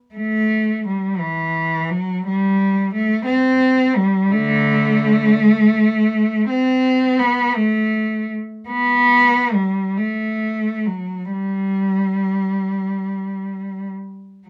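This classical fragment for unaccompanied cello, cut from a longer piece, has a lyrical, nostalgic mood. It sits in G major and 6/8. The tempo moves freely with expressive rubato, between 27 and 61 BPM counted in dotted quarters, and the tuning rests at A4 = 437 Hz. A single bowed cello plays from 0.1 to 13.9 seconds, staying between D3 and C4, with a rich, smooth tone and a singing vibrato. Close, detailed microphones set the instrument up front, while a light reverb lends the even line a faintly distant glow.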